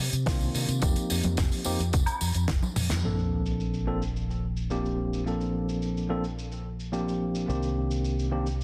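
A worn, slightly out-of-tune tine electric piano sits up front with light overdrive, sidechain pumping and dub echo over Cm9, F9sus4 and Bbmaj9 chords in this sunny, groovy nu-disco excerpt at 108 BPM in Bb major, alongside a bright, punchy fingered electric bass through an envelope filter, a dry, damped 70s drum kit with a fat snare and rolled-off top, a layered electronic kick that drops out at 2.6 s, background tambourine and congas that stop as a drum fill and band accent give way to a background sub drop at 3.0 s, with light reverb, small room ambience and a dense, heavily limited master.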